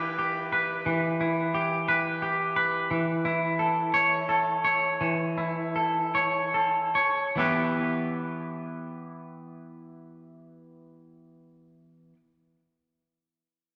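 Cathartic, cinematic rock in 6/8, moving at a slow 47-59 BPM counted in dotted quarters and set in E dorian, tuned slightly high to A4 = 441 Hz. A single twangy electric guitar carries the whole passage, picking clean arpeggios from E3 up to C#5, sitting up front in the mix with analog delay trailing its notes. The harmony rests on Em, shifts to A/E at 2.9 seconds as the tempo slows down, then returns to Em when a new section begins at 7.4 seconds. A wet scoring-stage reverb with a 1.9-second decay, blended with small-room ambience, gives the guitar a big arena sound. The guitar plays until 12.2 seconds, in what is cut from a longer piece.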